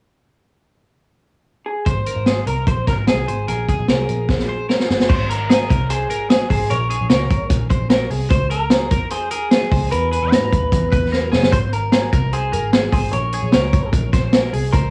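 Jangly indie pop in Ab major at 149 BPM, this bright, youthful excerpt has a homespun cassette feel, recorded in a small room. An electric guitar through a small old amp enters first at 1.7 seconds with the melody, its tone slightly broken-up and lo-fi, carrying tape echo. A twangy, clean twelve-string electric guitar joins at 1.9 seconds with chiming arpeggios, sitting lower in the mix with its own cassette tape colour and tape echo. Alongside it arrive a round, foam-muted picked electric bass and an up-front vintage drum kit with dark cymbals, a medium-tuned snare, a punchy kick and a rolled-off top, playing kick, snare, hi-hat and crash. Drum fills mark the move into the longer closing section at 5.1 seconds and appear again around 11.1 seconds, while the chords move through Ab, Bbm7 and Dbsus2 with a striking turn to E before returning home to Ab.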